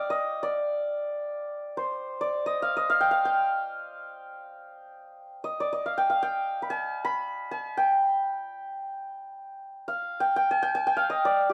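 This Persian modal piece is a short passage cut from a longer performance, carried by a lone santur from 0.0 to 11.5 seconds. The mood is warm and passionate, with the music unfolding in free time. The acoustic santur sits up front, its hammered strings giving off a shimmering, ringing tone across a range from G4 to B5. A wet studio reverb surrounds the instrument, giving the sound the feel of players performing live together in one room.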